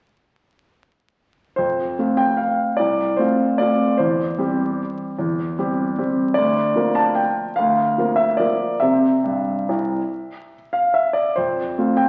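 Through the crackle of a very old 78 rpm record, a smooth, up-front solo grand piano enters at 1.6 s with an elegant, graceful classical waltz in F major and 3/4, played with rubato at 135-159 BPM and tuned to A4 = 442 Hz, moving from F through C/E, Bb/D and C before returning to F at 11.4 s, its clear, vintage tone ringing through a reverberant recital hall in this fragment cut from a longer piece.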